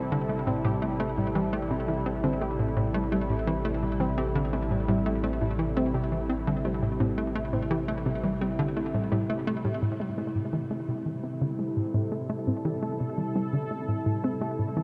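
A straight 4/4 pulse at 85 BPM carries this cosmic, hypnotic ambient excerpt in A minor, resting on an Am7 chord in a vast, echoing space with long reverb and a cassette-tape grain. An up-front hollow, bouncy square-wave pluck plays a detuned riff, while a bright, evolving sawtooth pad holds resonant chords and a mellow, warbling lo-fi pluck spins arpeggios in the background, all three with chorus and the two plucks also with delay. A round, deep analog bass holds a low A until 9.8 seconds, when a filter sweep begins on the dusty arpeggio sound as the piece moves into its second section.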